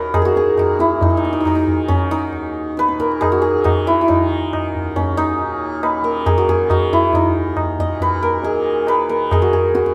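A hammered santur sits up front, its shimmering, ringing melody spanning Db4 to Eb5 in a Hindustani classical performance rooted in raga bhairavi. Beneath it, a softly plucked tanpura holds a low, buzzing drone that stays far back in the mix. The low-tuned tabla joins at 0.1 s, supplying percussion in a straight seven-beat cycle. The mood is introspective and solemn. The group plays live together in a moderate stone room whose reverb lends the acoustic sound a gentle halo, and the passage is cut from a longer piece.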